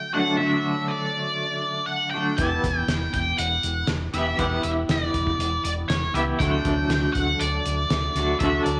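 A mysterious, hypnotic psychedelic rock passage at 120 BPM in straight 4/4, tuned to A4 = 436 Hz, opens with an up-front octave-fuzz lead guitar carrying the melody through wah, distortion and slapback echo, over a clean, twangy electric guitar riff that is double-tracked and colored with tremolo. At 2.4 seconds a dark, round, overdriven fingered bass and a cloth-damped drum kit join, the kit muffled, lo-fi and gritty with a fat snare, tight kick and hi-hat, as the harmony moves from D to Em and back to D at 6.4 seconds. Light reverb and a small room ambience frame this short section cut from a longer piece.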